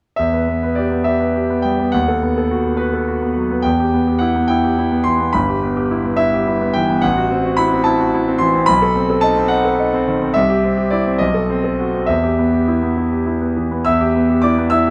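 A bright concert grand piano opens at 0.2 seconds, playing alone in this passionate, stormy classical study of a virtuosic kind, set in E minor and 6/8. The pulse sits around 70 dotted-quarter beats per minute, but the rubato feel lets time stretch and push throughout. Spanning from G1 up to E6, the instrument has a brilliant top, deep bass and long sustain, and it sounds up front within a moderate recital hall reverb. The harmony moves from E minor through B7 over D sharp, E minor over G and F-sharp half-diminished over A to a tense B7 flat 9, then briefly visits C before returning through B7 flat 9 to E minor at 12.1 seconds. A dark production frames the piano's clarity, and this fragment of a longer piece ends at 14.9 seconds.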